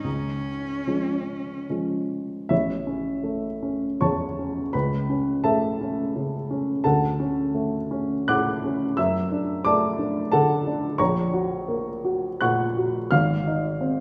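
A rich, bowed cello sings a smooth, even melody with vibrato for only the first 1.7 seconds of this tender, lyrical excerpt from a longer romantic classical duo. After that the dark, mellow baby grand piano carries on alone through 14.0 seconds, intimate with audible action noise and short sustain, moving from A through Dmaj7 and D/F# toward Gb/Bb and Ab in a rubato 3/4 at 72-90 BPM in A major. Both instruments sit up front, yet the wet recital hall reverb places the listener further back in the room.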